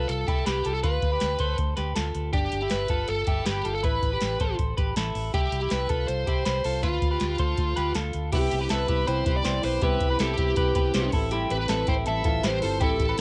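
A lightly reverberant home cassette recording, cut from a longer piece, carries this nostalgic, bright jangly indie pop at 160 BPM in straight 4/4. A distorted, bluesy overdriven lead guitar carries the melody up front with a cassette-tape color, over clean, compressed twelve-string electric guitar arpeggios, a round, punchy, foam-muted vintage bass and a soft vintage rhythm box with a deep kick, crisp snare and metallic hats. At 8.3 seconds the harmony moves to Cmaj7 and Am7 as a woody, boxy, fingerpicked old ladder-braced acoustic guitar and soft electric-piano-like synth keys with chorus and tremolo join in the background.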